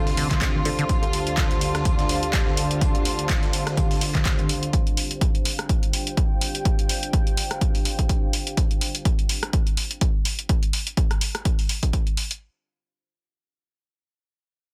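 Acid house in D minor at 125 BPM, this short, gritty and driving excerpt from a longer piece rides a swung sixteenth-note feel over a single Dm7 chord. A punchy, tape-warm electronic kick drum sits up front from 0.3 seconds, joined by an analog drum machine playing congas, handclaps, hi-hat and rim click that runs through to the end, while a dusty, compressed sampler-style kit adds a very quiet hi-hat and fat snare underneath. A lush, bowed studio string section holds smooth sustained chords with vibrato, pumping against the kick, and a deep, moody ambient pad with detuned unison, chorus and built-in reverb evolves slowly alongside it until 8.6 seconds. Briefly at the start, a soft, nasal chord stab with chorus, delay and a cassette-tape tint sits in the background, along with a squelchy, resonant sawtooth acid bass riff on D3 that carries tube saturation, delay and a filter sweep. The mix is dry, with a dense, heavily limited modern master.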